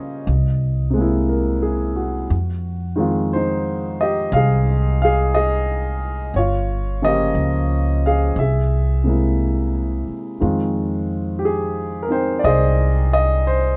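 A slow swung 4/4 at 59 BPM, with eighths lilting gently, sets up this melancholic, smoky jazz ballad fragment in F minor, cut from a longer piece. A warm upright piano with long sustain comps through C7alt, Fm7, Gm7b5 and Caug7 before returning to Fm7 at 10.4 seconds, while a plucked acoustic upright bass with steel strings and a woody tone holds the low end. Both instruments sit up front, captured by close, detailed microphones in a dry room.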